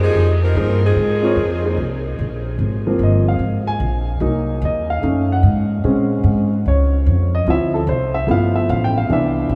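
Big band swing with a joyful, brassy lift, this short excerpt opens with a clear, vibrato-tinged saxophone section carrying the melody for its first 2.2 seconds over a warm baby grand piano and a woody, thumpy pizzicato upright bass, all placed up front. From 2.6 seconds the piano takes a solo through to the end, its short sustain and natural tone moving over rich extended harmonies while the bass keeps playing beneath it. A huge, echoing reverb gives the sound the air of a vast space.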